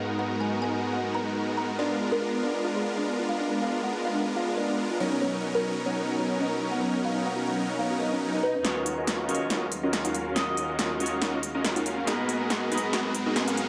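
Up-front, detuned supersaw chords carry the riff throughout this dreamy, lush future bass excerpt in Eb minor at 140 BPM with a swung half-time feel, joined by a woody, mellow kalimba melody until 8.6 s, a twangy clean electric guitar with sampler grit and tape echo, floating strings in the background, and a very quiet, round pluck playing arpeggios from 1.8 s. A background swell arrives at 8.1 s, and from 8.6 s a build-up begins as punchy, overdriven drums with crisp hats enter with a fill while filter sweeps move through the supersaw and strings. The chords run through Abm9, Bb7b9, Bmaj9 and Ebm9 in a moderate digital room reverb with a soft, rolled-off top end.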